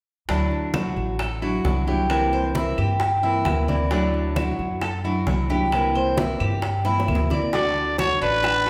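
A straight 4/4 groove at 132 BPM carries this sunny Cuban son and guajira excerpt in D major, where an up-front, bright, fingerpicked nylon-string guitar with audible finger squeak sways between Dadd9 and C7 over thumpy, dark gut-string pizzicato upright bass. Meanwhile, a Cuban tres picks metallic double-string arpeggios and round low-tuned bongos sound from a small room. Ringing soft-handed congas sit in the background, with woody claves joining there at 0.7 s. After a drum fill at 6.9 s, a raspy, growling trumpet solo with scooped notes and vibrato bursts to the front at 7.5 s as the band plays live in one room under wet large-studio reverb.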